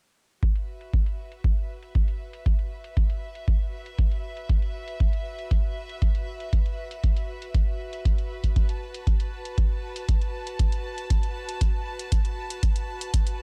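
A deep, dry analog kick sits up front and drives this raw, trippy acid house excerpt at 118 BPM in 4/4, with filtered, metallic electronic hi-hats, both entering at 0.4 seconds. An intimate chamber string ensemble bows softly sul tasto with light vibrato, holding an F#m7 chord in F# minor as it fades in across the whole clip with sidechain pumping. Studio reverb adds space to this short cut from a longer piece.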